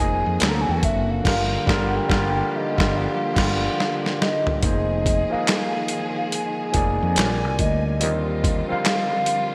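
R&B and neo-soul in a smooth, soulful mood, this cut from a longer piece sets a hollow, woody clarinet-like synth lead with chorus and delay over a barky, overdriven tine electric piano, lush bowed strings, and a round, dark fretless bass that drops out at 8.8 seconds, while a gritty, thumpy boom bap drum kit with gated reverb enters at 0.4 seconds and adds a fill at 3.8 seconds, all within a bright 1980s-style digital production.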